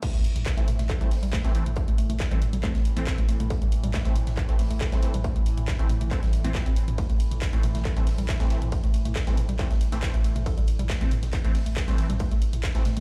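Driving peak-time techno in a relentless, intense drop, where a distorted, up-front electronic kick and a tape-toned analog drum machine with handclaps and filtered hats, toms and cymbals pound above a very quiet acoustic rock kit, while a round sub bass holds the low end, a woody wave-folded pluck riff and punchy detuned supersaw stabs pump against the kick, a moody ambient pad drones in from 1.7 seconds, an electronic impact marks the opening, and the whole mix rings out in a bare stone room.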